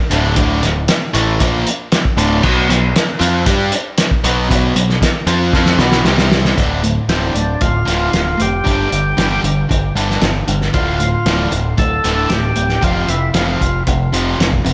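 A double-tracked, cranked stack guitar riff drives this classic rock excerpt in D dorian at 115 BPM from the very start, together with a bright, overdriven picked electric bass and a muffled, cloth-damped drum kit with a fat snare, tight kick and dark cymbals, up front in a small, lo-fi room. After a drum fill at 5.5 seconds, the power-chord riff moves into a minor-flavoured passage, and at 7.1 seconds a thick, gritty tonewheel organ carries the melody through a slow rotary speaker. Light reverb and studio ambience frame the saturated, up-front sound.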